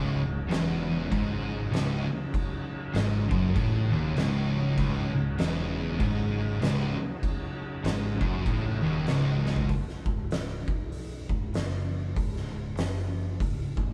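An ominous, brooding stoner and doom metal groove at 98 BPM with a swung feel in C# minor opens on a C#m chord, with a crunchy double-tracked guitar and two thick fuzz guitars riffing low, a growly overdriven picked bass, and a gritty tonewheel organ holding sustained chords with chorus vibrato in the background; an oversized low-tuned drum kit with a fat snare, punchy kick and dark cymbals joins up front at 0.5 seconds, and after a drum fill the guitars and organ drop out at 9.7 seconds, leaving bass and drums on a C#5 in a pumping stone room captured live to cassette tape.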